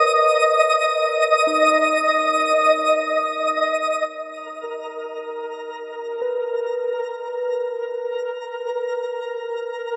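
A twinkling granular texture, up front and mellow with an octave-up shimmer, opens together with muted, felt-like synth keys playing soft, dark arpeggios, both sounding from the start in a peaceful, luminous ambient piece in free time, tuned to A4 = 441 Hz. The keys have a fast attack and decaying notes thickened by chorus and delay, while the granular layer rises slowly and sustains into a long release inside its own reverb, sparkling above the Bmaj9 harmony until the chord falls away at 4.1 s. This excerpt from a longer piece sits in a cathedral-like space with a 7.2-second reverb tail, and lossy compression artefacts are audible.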